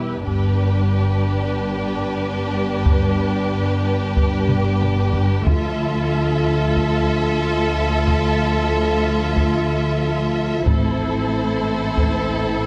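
A dark, epic orchestral film cue opens on lush bowed strings, with a shadowy violin section carrying the melody with portamento over a smoother second violin line, distant viola accompaniment, and cello and woody double bass anchoring the bass beneath mellow, punchy French horn chords. A close, dry taiko ensemble struck with hard sticks drives the piece and plays a drum fill at 4.5 seconds. Timpani with calf heads sound in the background at 5.5 and 10.7 seconds, all in a lightly reverberant, detailed sound.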